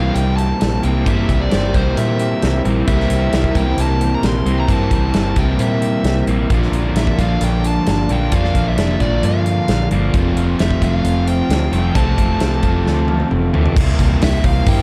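A dark, lightly reverberant small-room sound carries this wistful, blissful shoegaze and dream pop rock excerpt at 132 BPM in C mixolydian, where a nasal lead guitar with a parked wah sings an overdriven melody with tape echo over a shimmering chorused pulse-width pad, arpeggios from a very quiet direct-recorded clean electric guitar, and background riffs from a crunchy overdriven guitar and an overdriven semi-hollow guitar with reverse reverb that drops out at 13.8 s, all anchored by a round, foam-muted vintage fingered bass up front and a big rock drum kit with punchy kick and bright cymbals that plays a fill from 12.9 s before a jingly tambourine joins at 14.0 s.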